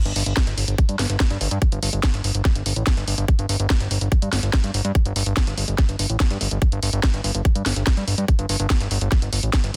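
A fat, nasal analog bass with a saturated sawtooth-and-square edge and an evolving, sustained tone sits up front from the start of this short, psychedelic and alien psychedelic trance cut, alongside a layered electronic kit with hi-hat and a cracking snare, and then, from 0.4 seconds, a tight electronic kick, all held close and dry in a dense, heavily limited modern master.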